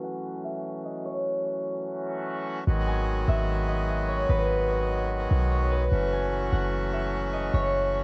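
Set at 148 BPM in 4/4 with a half-time feel, this short cut from a longer atmospheric cloud-rap piece moves at an unhurried, melancholic pace with a spacious air. A concert harp carries the melody from the start, its fingerpicked, ringing tone softened by a low-pass filter and trailed by tape echo, while an accordion holds sustained chords beneath it, reedy, hollow and close-miked, with a dry, full presence and the grain of cassette tape. The opening 2.7 seconds unfold over F#m7 under a filter sweep. At 2.7 seconds a clean 808-style bass enters, deep, boomy and sine-like, with a fast attack and a decaying, dark tail that sits up front and louder than the other parts, as the harmony moves to G#m7 before returning to F#m7 at 5.9 seconds. The whole recording has a home-made cassette character, dulled by a low-pass filter and nearly dry of reverb.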